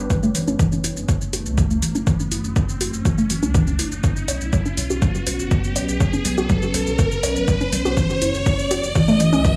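A moody, detuned pad in the background and a deep, rumbling saw bass with tube saturation open this driving, hypnotic melodic techno excerpt at 122 BPM in F# minor, soon joined by a punchy, tape-warm kick up front, overdriven metallic hats with shaker, and a mellow, lo-fi pluck playing arpeggios through chorus and analog delay, all pumping to the sidechain except the kick, while an electronic riser builds from 1.3 seconds over F#m7 and Bsus2 chords toward a drum fill at 8.0 seconds in an echo-heavy, small-room mix.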